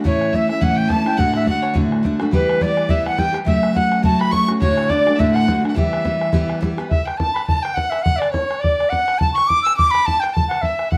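Celtic folk reel at a driving, spirited 210 BPM in E dorian with a lightly swung feel, where a bright, reedy wooden flute with vibrato and a crisp attack leads up front, a clear, intense bowed fiddle traces a softer second line alongside it, a picked steel-string guitar with audible finger squeak picks through A, D, Em and F#m before dropping out at 6.9 seconds, and a tight, damped bodhran keeps the pulse in a dark, moderately reverberant mix cut from a longer piece.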